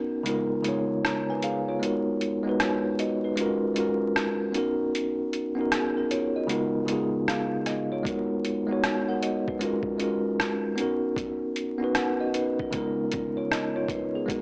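Lo-fi hip hop with a nostalgic, dreamy mood, cut from a longer piece and built on a swung 4/4 groove. A bell-like tine electric piano carries the accompaniment from the opening moment, its bright, clean tone heard up front through built-in speakers and softened by a low-pass filter as it moves through lush chords such as C#13, G#m7 and Bmaj9. A trip hop sampler-style drum kit joins at 0.3 seconds with hi-hat, rim click and a thumpy kick, its compressed, pitched-down character also sitting up front. The first 8.1 seconds form a break before the harmonic cycle repeats. Light reverb surrounds a dry, gritty hardware sound with vinyl crackle and the character of a small speaker.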